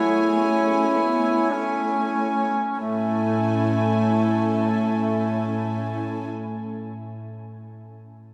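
A warm duduk sings the folk-style melody up front, with vibrato and scooped notes that still sound distant and roomy, over sul tasto strings: floating, soft-attacked violins on a second line, dark, woody, lush violas in accompaniment, and rich, pure cellos on the bass, in this uplifting, tender cinematic excerpt in A major, opening on Amaj7 at a rubato 48 BPM in 3/4 that slows through the first 2.8 seconds, all bathed in a wet cathedral reverb.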